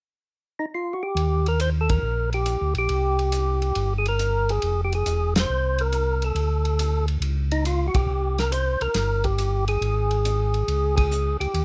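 Swinging and greasy, this short soul jazz organ trio excerpt in Eb major moves at 139 BPM with a swung 4/4 feel, as a fat, lightly overdriven, percussive tonewheel organ carries the melody through a slow rotary speaker from 0.6 seconds, a mellow, round tonewheel organ bass with chorus vibrato joins at 1.1 seconds, and a soul drum kit of hi-hat, kick, ride and snare with dark cymbals and a tight kick enters at 1.2 seconds, the band hitting accents over chords like Ebmaj7, Fm and Badd9 in a dry, closely miked, detailed sound.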